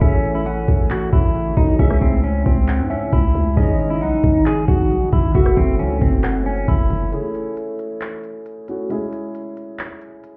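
The knocking kick, crisp hats, handclaps and rim clicks of an up-front trap drum kit drive this melancholic, brooding hip hop cut, set at 135 BPM in a half-time 4/4 feel in C# harmonic minor. Beneath them a growling, buzzy 808-style bass with a fast attack and decaying tail sits prominently. A dark, slightly broken-up electric guitar carries the fingered melody through spring reverb, tape echo and a low-pass filter. Behind it a glassy wavetable pluck adds a crystalline second line with ring modulation, a moving notch and chorus. A mellow grand piano with audible action noise and an intimate, vintage character supplies the accompaniment, while a very quiet, ethereal pad holds detuned sustained chords over the progression from Amaj7 through C#m, G#sus4 and F#m7. At 7.1 seconds the guitar, pad and bass drop out for a break, leaving piano and drums to carry on, the drums until 10.3 seconds and the piano until 10.4 seconds, the whole mix heard muffled as if through a wall into a reverberant club.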